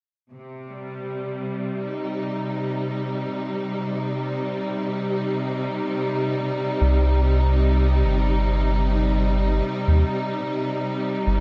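Set in free time, this hazy, deep ambient dub excerpt in C minor opens with a lush, bowed string section holding sustained chords on C minor from 0.3 seconds, its smooth vibrato sitting up front in a moderate spring reverb; the strings carry on as a round, soft dub sub bass with a fast attack enters at 6.8 seconds and sustains low beneath them to the end at 11.4 seconds.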